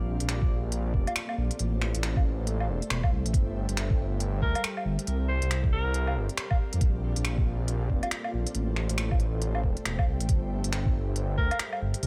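A menacing, detuned sawtooth bass sits up front and evolves through filter swells with sidechain pumping, alongside a muffled, thumpy, pitched-down kick in this ghostly, melancholic future garage excerpt with a swung sixteenth-note feel. Beneath them, an ethereal pad with chorus and built-in reverb holds mellow sustained chords cycling from Bbmaj9 through Am7, Gm69 and C9sus4, while a small-room electronic kit adds finger snaps, crisp hi-hats and woodblock. A bright, vintage-toned alto saxophone with light vibrato, scooped notes and delay offers a brief pop-style phrase from 4.4 to 6.2 seconds and a fleeting note at 11.4 seconds, all set in light digital ambience.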